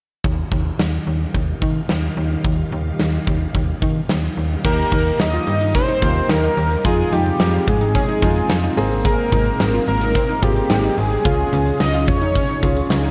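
A straight 4/4 pulse at 109 BPM drives this wistful, nostalgic synth-pop passage in Eb mixolydian, cut from a longer piece. The huge arena drum kit sits up front with a boomy kick, a medium-tuned snare, bright cymbals and a pumping room sound, while a snappy, digital slap-like FM bass with a metallic attack holds the low end. Behind them, a vintage string machine with cello tone carries full-bodied, evolving sustained chords through an ensemble chorus, moving from Ebadd9 to Eb, Fm7, Abadd9 and Db. At 4.6 s a fat analog lead takes the melody up front, its detuned sawtooth tone with a sub octave, filter sweep and vibrato. It arrives alongside an intimate concert grand piano in the background with audible action noise, and a round analog pluck that plays arpeggios through chorus and analog delay. A moderate concert hall reverb and a dark, warm production wrap the whole mix.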